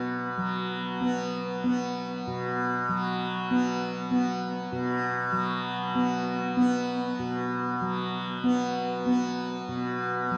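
A lone tanpura sounds from the start, its softly plucked, buzzing drone shimmering up front across a range from B2 to B3, and it carries the whole 10.4 seconds in free time. This is calm, meditative world music with a spacious, dreamy feel, soaked in a huge ambient reverb of 7.5 seconds, while a diffuse delay blurs the tanpura's tone. The passage is cut from a longer piece.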